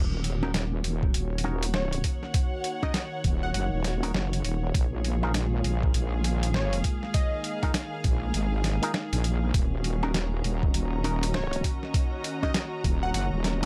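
Swung sixteenths drive this swaggering, gritty glitch hop excerpt, where a thumpy, up-front electronic kick and a pitched-down boom bap sampler-style kit of hi-hat, snare and toms sit beneath a heavy, saturated wobble bass, while a dark, envelope-filtered electric guitar adds pumping stabs with tape echo from 0.4 s, a woody studio string section lends bowed texture from 0.8 s, a smooth analog pad holds sustained chords in the background, and a punchy, catchy unison lead carries the melody from 1.7 s in a dry room.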